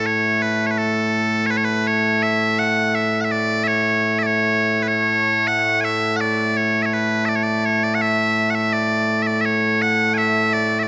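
Scottish traditional pipe music in a three-beat metre: a stirring, ceremonial excerpt in which solo bagpipes, bright and piercing, sound continuously and up front for the full 10.9 seconds, caught by close, detailed microphones with a light touch of reverb.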